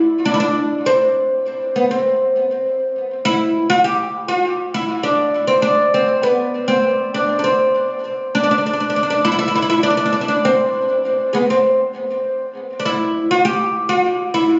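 A bright, woody oud plays alone from start to finish in this passionate Arabic fragment, its fretless double strings plectrum-plucked and placed up front with a tape echo trailing its notes. The straight 4/4 feel moves at a moderate pace, and the instrument stays in a narrow low-middle range. The sound comes from a phone in the room, soaked in a wet recital-hall reverb and dulled at the top end, giving the 14.6-second excerpt a warm cast.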